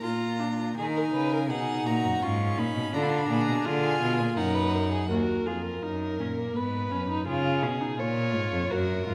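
A baroque-style classical fugue for string quartet, this short excerpt from a longer piece moves at 83 BPM in 3/4 with a straight, elegant and lively feel in E-flat minor. The first violin carries the melody high in its range with a close, smooth and even tone and vibrato, then drops out at 5.1 seconds as the music turns to a new section. The second violin plays a flowing second line marked by expressive portamento and a silky top, while the dark, even viola fills in the accompaniment beneath it. Anchoring the ensemble, the cello sits up front with a focused, clear bass line that carries through to the end. The harmony moves through E-flat minor, A-flat minor and a B-flat seventh before settling toward D-flat, all set in a recital hall whose lingering reverb lends the quartet a resonant, spacious glow.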